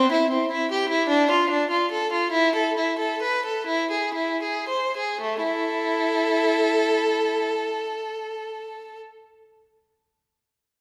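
Classical, a baroque-style suite movement for unaccompanied violin in A minor, flowing and introspective in a rubato 6/8 at roughly 36-52 BPM counted in dotted quarters. A single bowed violin carries everything from 0.0 to 9.0 seconds, ranging from A3 to C5 with a clear, smooth tone, even phrasing and vibrato, sounding close and up front. The harmony moves from C through Dm and A5/E to E, slowing down across the opening passage before settling on A5 at 5.2 seconds as a second section begins. A wet recital hall reverb with a 1.6-second decay surrounds the instrument, giving a sense of hearing it from further back in the room. This short passage is cut from a longer piece.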